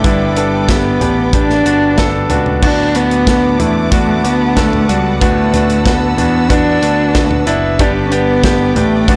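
A dark, woody bowed cello with vibrato carries the melody through this anthemic, hopeful piano-driven pop excerpt in D major at 93 BPM, backed by a polished, up-front concert grand with deep bass, a direct picked electric bass, a studio drum kit with bright cymbals and a tight kick, and a lush, distant string section holding sustained chords, over harmony that moves from G to D6 and returns to G at 7.8 seconds, all set in a light small-room reverb within an overdriven, blown-out recording.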